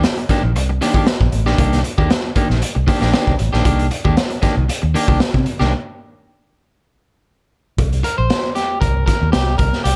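A hypnotic, sly funk groove in C dorian moves at 116 BPM in a straight 4/4, cut from a longer piece. A raw garage drum kit sits up front with a boomy kick, a medium-tuned snare and hi-hat, its gritty, saturated sound pumping in a small room with a rolled-off top. A vintage muted fingered electric bass lays down a dark, round, foam-muted line underneath, while an electric guitar at the edge of break-up, picked, compressed and touched with vibrato, also sits up front, comping over a Cm9 harmony. At 5.7 s the groove drops into a break where the chords fall away, and at 7.8 s a clean electric guitar solo comes in as the harmony turns to a C7 sound. Light reverb and studio ambience give the whole production a dark, warm character.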